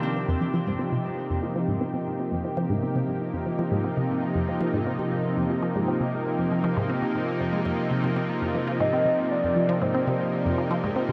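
A thick, lush unison pad sits up front with bright, detuned sustained chords on an F7(no3) harmony, setting a cosmic, hypnotic tone for this slice of ambient, sequencer-driven space music at 118 BPM in 4/4. Beneath it, a juicy, squelchy blip pluck repeats a riff through chorus, phaser and delay, while a ringing, fingerpicked Celtic harp adds delayed arpeggios until 3.0 s. At 8.8 s a soft, round octave-layered synth lead with vibrato arrives with a brief melody, all set in a huge ambient reverb with a 9.1-second tail.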